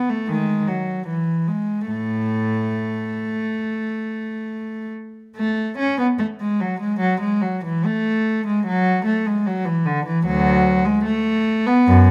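Moving in a flexible 4/4 with rubato between 67 and 78 BPM, this short excerpt from a baroque-style suite movement for unaccompanied cello carries a radiant, dance-like mood. A single bowed cello plays alone for the full 12.1 seconds, ranging from D2 up to C#4. Its gut-string tone sounds rich and reedy in a period style, placed close and up front. The phrase at the opening returns at 5.4 seconds, so the passage falls into two matching statements. Light reverb gives the solo line a touch of space while keeping the player's sound intimate.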